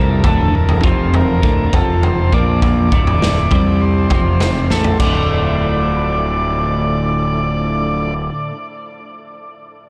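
A raw garage drum kit sits up front in this short psychedelic rock excerpt, its saturated, gritty sound with dark cymbals, punchy kick and a medium-tuned snare pumping in a small room before a drum fill at 4.7 seconds and a stop at 5.1 seconds. Around it, a clean, compressed twelve-string electric guitar plays a double-tracked riff through flanger, while a fuzz-drenched fingered bass, round and overdriven, holds the low end in D minor at 101 BPM in a straight 4/4. A vintage combo organ carries the buzzy melody through tape echo, and a very quiet tonewheel organ, full and lightly overdriven with slow rotary and chorus vibrato, sustains chords underneath. The harmony circles around Dmadd9 with power chords on F, Bb and C. An enormous ambient reverb soaks the whole mix in a dreamy haze, giving the passage a trippy, hypnotic mood.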